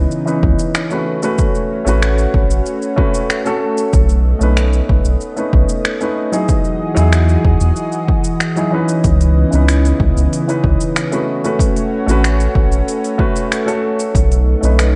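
Dark, warm production in a moderate recital hall reverb frames this blissful sunset chillout excerpt, where a polished grand piano with tape echo and a low-pass filter plays accompaniment over a lush, warbling unison pad holding detuned sustained chords through chorus, a round, deep analog bass with tube saturation sits up front, and a smooth R&B kit of finger snaps, hi-hat and shaker plays alongside a punchy, overdriven electronic kick as the harmony moves through C#m9, A69, B9 and Emaj9.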